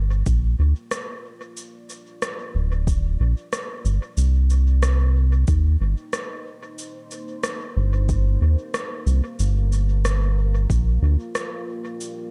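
A round analog bass sits up front in this meditative ambient dub excerpt, its detuned blend of sawtooth, sine and triangle tones giving a fast attack and sustained low notes in C minor at 92 BPM, in a straight 4/4. Behind it, a moody pad fades in across the full 12.3 seconds, holding sustained chords with a slow attack, long release, sub octave, moving notch, chorus and built-in reverb. A layered electronic kick drum stays in the background from 0.3 seconds. An electronic shaker and rim click, re-recorded in a large room, carry a dub echo. The harmony moves from Gm7 to Cm7 and back to Gm7, and the deep, warm, shadowy production is tuned slightly low, to A4 = 439 Hz.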